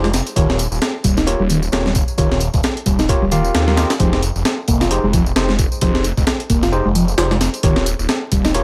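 Vinyl crackle and a dry, close sound frame this short cut from a longer breakbeat track, which moves with a swaggering, gritty attitude at 132 BPM in 4/4, with a 57% swing on the sixteenths and tuning set to A4 = 439 Hz. A compressed, sampler-style break sits up front, pitched up and tape-warm, with a thumpy kick, a medium-tuned snare and hi-hat that sound re-recorded in a small room, while an electronic, layered tambourine enters at 0.1 seconds with overdrive. The phased, detuned saw bass is thick, bright and saturated, swirling low and prominent with a fast attack and sustained notes. A mellow, reedy electric piano carries the riff through its built-in speakers, clean and shimmering with fast tremolo. Above it, an overdriven tine electric piano fires stabs through a combo amp, trailed by dub echo, as the harmony moves from Eb7 at 0.4 seconds to Fm7 at 4.0 seconds and back to Eb7 at 7.6 seconds.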